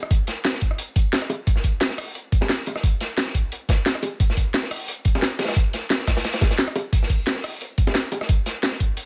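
A drum and bass kit opens this short drum and bass clip at 0.0 s, its cracking snare, bright hats, rim clicks and crash cymbal sitting up front in a layered, produced sound re-recorded in a small room. Almost at once an electronic kick drum joins with a knocking punch, also up front, while a crunchy breakbeat kit adds a dark, gritty second layer of hi-hat and medium-tuned snare, saturated with a rolled-off top and high-pass filtering on its hats, snare and room. At 1.3 s tight, high-tuned bongos enter, compressed and saturated, and they play until 8.2 s. The groove runs at 176 BPM in 4/4 with a light 16th-note swing, and its mood is uplifting yet dreamy. The mix is dry, with little reverb, which keeps the stacked rhythm layers close and immediate.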